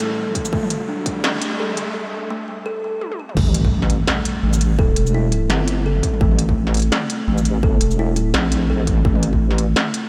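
A deep, wobbling bass with chorus and tube saturation sits up front from the drop at 3.4 seconds, alongside a distorted electronic kick that returns there, in this spacious, tense half-time drum and bass excerpt. Before that, a woody, ringing kalimba plays delayed arpeggios over a very quiet, moody analog pad and an industrial kit with a clanging snare and crisp hats, while a background riser builds into a short break and a filter sweep runs up to the drum fill. An impact marks the drop, and the whole mix is dreamy and soaked in a huge ambient reverb.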